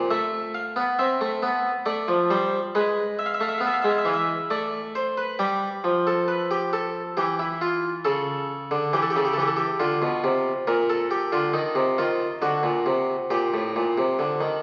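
Crackling, tube-saturated sound from a very old 78 rpm record, with a faint mains hum and a reverberant recital hall, carries this solemn, serious excerpt of a baroque-style two-part invention in 3/4 at 68 BPM, played on a bright, plucked Italian-style harpsichord with one set of strings, placed up front and ranging from A2 to F5, as its harmony moves through a second section from 5.4 s and settles into G minor from 10.7 s.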